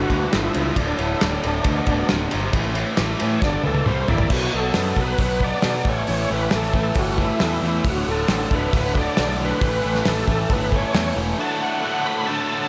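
A big arena sound with lush hall reverb and softened highs frames this swaggering, driving classic rock cut, where a thick, gritty overdriven tonewheel organ with slow rotary speaker and chorus vibrato solos until 4.3 seconds over a bright, double-tracked overdriven electric guitar riff with spring reverb and slapback echo, a growling overdriven picked bass, and an up-front, cloth-damped acoustic drum kit with a thuddy tone, tight kick and dark cymbals that plays a fill from 3.4 seconds, before the bass drops away at 11.3 seconds.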